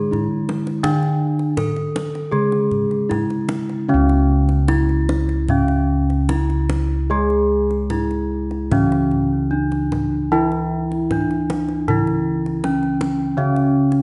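Hypnotic and stately, this fragment of Javanese gamelan in pelog tuning moves on uneven beats, with a close, ringing bronze metallophone melody struck by a wooden mallet over a brighter, horn-mallet metallophone accompaniment in a lower register, round, beating bossed gongs carrying the bass, and a deep, dry kendang, all set in a moderate recital-hall reverb as the music moves into a new section at 3.9 seconds.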